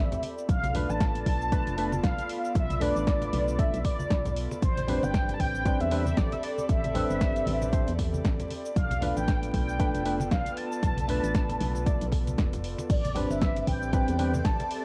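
Dry and lo-fi, recorded at home on cassette with vinyl crackle coating the mix, this hypnotic deep house excerpt moves at 116 BPM with a swung 4/4 groove. It is built on an overdriven, deep electronic kick, a punchy analog drum machine with hi-hat, shaker, snare and crash, and low-tuned congas sitting close but in the background. A hollow, dark FM bass with an organ-like bite and chorused percussive organ stabs trailing analog delay both pump against the kick, while a round, horn-like synth lead with vibrato and tape echo carries the melody over an airy, breathy pad and a blurred granular cloud pad. The harmony alternates between Bm7b5 and Am11, and at 12.9 seconds a very quiet, shimmering string machine of violins slips in near the end.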